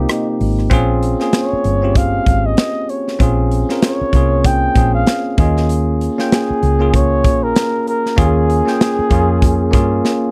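A breathy, dark flugelhorn carries the melody with vibrato and scooped notes, close-miked and played in a jazz style, in this lush, romantic 1970s-style soul groove at 96 BPM with a swung sixteenth feel. A bell-like, bright tine electric piano sits up front beside a round, punchy fingered electric bass and a polished acoustic drum kit with tight kick, medium-tuned snare, rim click and hi-hat. The harmony moves through Abmaj7, Bbm7 and Eb9sus4 before a drum fill at 10.0 seconds, all in a dry, close studio sound, in this short section cut from a longer piece.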